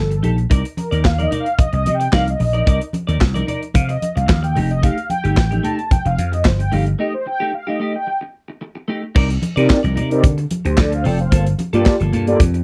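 A growly, bright slap bass sits up front in this slick, danceable slice of early-eighties boogie funk at 111 BPM in C dorian, driven by an acoustic drum kit with a punchy kick, handclaps, hi-hat, crash cymbal and a medium-tuned snare. Round, detuned sawtooth synth brass with chorus and vibrato carries the F9 and Cm9 chords, a compressed, twangy clean electric guitar plays a riff through lush chorus, and very quiet, soft-handed congas add texture, while an analog polysynth solo runs until 9.2 seconds with a break from 7.0 seconds. The dry, close 1970s-style studio sound keeps every part intimate as the excerpt moves into a new section over Cm9, Dm7 and Gm9.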